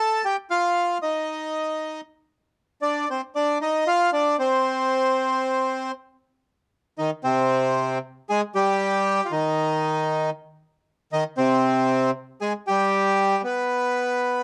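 A reedy, dark bandoneon plays alone for the full 14.4 seconds, close-miked, dry and up front, in this passionate, sultry tango fragment in C minor, taken at a rubato 116 BPM through chords such as Ebadd9, Csus2 and Ab/C, moving into a second section at 6.5 seconds and reaching G near the end within a shadowy production touched by light reverb.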